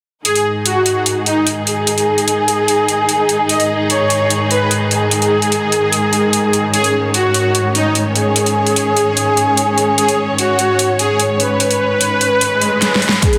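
The groove sits in a half-time 4/4 feel, driven from the start by an up-front dubstep kit with a huge snare and metallic hats, giving this chaotic, heavy wobble dubstep excerpt its weight. Over it, a soft, detuned unison supersaw carries the melody in a sustained, smooth tone, coloured by phaser, low-pass filter and dub echo. Beneath, a muted string section bowed con sordino holds dark, veiled chords with vibrato, pumped by sidechain. An electronic swell and riser enters at 12.5 seconds, a drum fill follows, and a punchy, layered, tape-warm electronic kick lands at 13.2 seconds. A moderate, lush hall reverb surrounds the sound, and the dense, strongly limited master feels modern.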